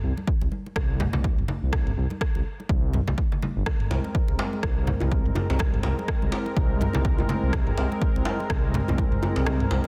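Afro house at 124 BPM in 4/4 with a swung sixteenth-note feel, this spiritual, warm excerpt is cut from a longer piece. A dark, detuned sawtooth bass sits up front from the start, deep and rumbling with a beating, saturated edge, pumping under sidechain between G1 and C2. Congas ring close and dry almost immediately, joined by a punchy, overdriven electronic kick and a tape-toned afro-pop kit of rim clicks and toms. At 3.7 seconds a smooth, detuned analog pad enters with chorus and its own sidechain pumping, holding soft-attack chords from Ab3 to Bb4 as the harmony moves from C5 to Abadd9/C, while a hard-handed, band-limited djembe with a vintage character arrives just after. The mix carries light digital reverb and a dense, heavily limited modern master, and the kick drops out at 9.5 seconds.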